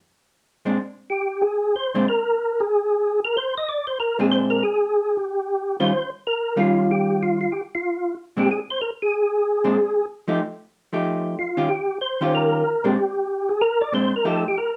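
Jazz at a brisk 187 BPM in 4/4, swung on the eighths, with a greasy, soulful mood in this short cut from a longer piece. A percussive tonewheel organ carries the melody from 1.1 seconds, its mellow, round tone given a gentle churn by a slow rotary speaker and chorus vibrato, with third harmonic percussion adding a clipped attack to each note. A vintage hollow-body electric guitar supplies the accompaniment, picked cleanly with a dark character, entering at 0.7 seconds, pausing briefly, then returning at 4.2 seconds. Both instruments sit up front in a moderate studio reverb. The harmony moves through bluesy ninth chords, Bb9, Eb9 and F9, circling back to Bb9 before landing on F9 at the close.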